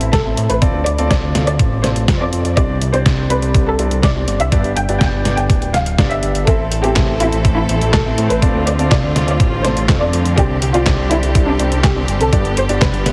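Italo disco at 123 BPM in a melodramatic, bittersweet mood, where a fat, ring-modulated analog bass and a thumpy electronic kick pulse alongside a detuned 8-bit drum machine's handclaps, hi-hat and snare while a grand piano stabs through an Am–Dm7–Csus2–G cycle beneath a dark, woody violin section melody trailed by digital delay, until a bright, biting symphonic string section adds sustained chords at 6.5 s, all wrapped in a lush hall reverb and a heavily compressed, radio-like sound.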